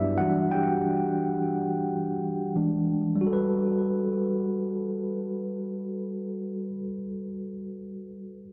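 A mellow tine electric piano plays alone through this short, smooth R&B fragment, its clean, up-front tone colored by delay and heard through built-in speakers. Set in a swung 4/4, it moves from Em9 through E7 before settling on Gmaj9 at 3.2 seconds. A huge ambient reverb soaks the dreamy mix, giving the piano a long, hazy tail.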